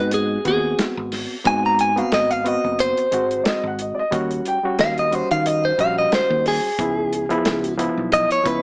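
A straight-eighth groove at 90 BPM in 4/4, with a light 55% swing on the sixteenths, drives this swaggering, rollicking soul blues excerpt, cut from a longer piece and moving from Ab7#9 to Eb7#9 at 4.1 seconds and Db7#9 at 6.8 seconds. A bright, clean electric guitar, recorded direct and compressed, carries the picked melody up front, with spring reverb around its lines. Underneath, an overdriven reed electric piano played through a combo amp adds barky, gritty accompaniment, while a fingered electric bass sounds growly and round. The soul drum kit enters at 0.1 seconds on hi-hat, kick and snare, its tight kick and medium-tuned snare sounding dry and smooth with a rolled-off top. A dark, woody upright piano steps forward briefly with a second line between 3.4 and 4.8 seconds, and the whole mix sits in light reverb with a small-speaker character.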